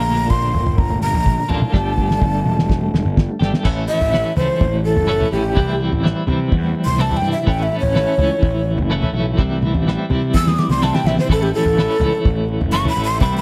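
A dry, close studio sound with a 1970s feel frames this hypnotic, hazy psychedelic rock excerpt, moving at 126 BPM in a straight 4/4. A breathy, mellow flute sits up front with vibrato, audible chiff and a slapback echo, carrying the melody from the start and taking a solo from 3.7 seconds onward over chords that shift between A and C. Beside it, a bright, twangy twelve-string electric guitar plays a clean picked riff colored by tremolo, while a fuzz-laden picked bass adds punchy, overdriven weight underneath. The cloth-damped drum kit is dark and thuddy, with a fat snare, tight kick and dark cymbals, entering at 0.3 seconds and playing fills from 1.7 to 3.7 seconds and again around 10.3 seconds. High-tuned congas ring very quietly in the distance, as if heard from a large room, adding a faint hand-played shimmer to the haze.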